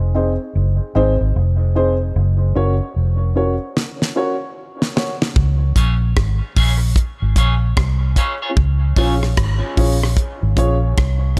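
Laid-back and hazy, this dub reggae excerpt opens on a break of round, punchy, foam-muted electric bass and dark, woody, slightly detuned upright piano stabs soaked in dub echo, with a filter sweep from 2.2 seconds, before a dry 70s drum kit with a fat snare and tight kick rolls in with a fill at 3.8 seconds and a bright, twangy clean electric guitar adds echoed accompaniment from 5.8 seconds, all in a small room.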